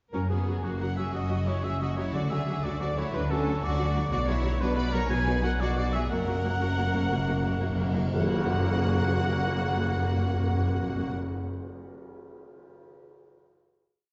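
Heard from further back in a wet scoring-stage reverb, this complete, soaring and heroic adventure film cue in 12/8 at 120 BPM in F# mixolydian sets a bright, intense violin section on the tune, doubling it in sixths and unison, joined in unison by a smooth second violin section in the background and a warm, lightly vibrato cor anglais solo, over repeated notes and sustained chords from a clear viola section, very quiet mellow harp broken chords, and a lush bowed bass line from focused cellos and expressive double basses, while cymbal swells and tam-tam strokes arrive at 4.1 s and hard-mallet timpani roll in at 6.1 s, leading into a band accent on the final chord at 8.1 s.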